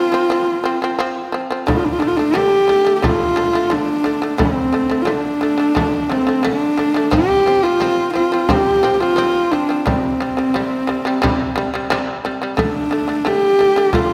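A moderate concert-hall reverb gives this Mongolian folk excerpt a spacious, vast feel, while the fiddle and shamisen sit up front. At 88 BPM in a straight 4/4, the horsehead fiddle carries the melody with a husky, airy bowed tone, light vibrato, soft attacks and portamento slides, sounding intimate and close as a single player. Beneath it, a bright, buzzing fretless shamisen plays plectrum-plucked arpeggios in a lower register, percussive and acoustic. At 1.7 s a deep, large frame drum enters with a live-room resonance, and the music carries a galloping character. The harmony moves between F5, D5 and C5, returning to D5 near the close of this cut from a longer piece.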